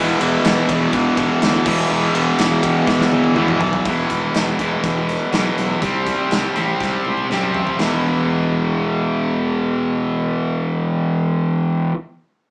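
A roomy, small-speaker live-band sound frames this aggressive, heavy hard rock excerpt in E minor at 122 BPM, where an up-front, double-tracked, compressed and distorted electric guitar riff moving between E5 and C5 power chords runs throughout alongside a growly fuzz-and-overdrive fingered bass, a second overdriven guitar riff drops out at 3.8 s, and a big acoustic kit with bright cymbals, a medium-tuned snare and a punchy kick pumps the room with fills closing the first two sections before falling away at 7.9 s.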